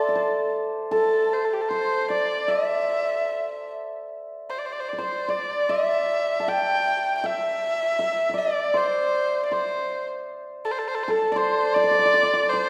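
An erhu and a hammered dulcimer sound together from the start in this wistful, graceful fragment of Chinese traditional chamber music, moving at a rubato 74-82 BPM in 4/4 within the A yu mode. The single erhu carries the melody up front with a close, intimate tone, light vibrato, soft attacks, portamento and an airy bow, while the bright, shimmering dulcimer rings out a second line beside it. A lush reverb, like that of a church or concert hall, surrounds the pair for the full 12.7 seconds.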